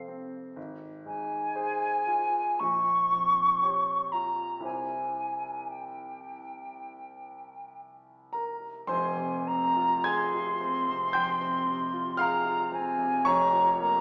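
Flute and grand piano begin together at 0.0 seconds in this tender, serene romantic classical duo in F minor, moving in 4/4 at a slow 50-61 BPM with a rubato feel. The silver concert flute carries the melody high in its range, between G5 and Db6, with a pure, hollow tone, a crisp attack and vibrato, and it sits clearly above the piano. The concert grand supplies the accompaniment across a broad span from F1 to Ab6, its sound natural and warm, anchored by a deep bass. The harmony moves from F through Fm/Ab, Gm7b5/Bb and C before a new passage opens on Fm at 8.9 seconds, closing on a rootless Gm7b5/F. A wet recital-hall reverb surrounds the duo, heard from further back in the room with a small-speaker quality, and this fragment, taken from a longer piece, stops at 14.0 seconds.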